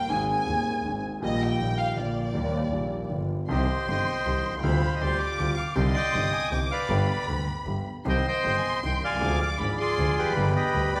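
A warm, expressive bowed violin section carries a sultry second line over an open, long-sustaining grand piano and a clear, nasal double bass in this dramatic, rubato tango fragment in 3/4 at 158 BPM, moving from Eb major into C harmonic minor at 3.5 s, when a reedy, dark bandoneon enters up front with the melody, all set in a recital-hall reverb.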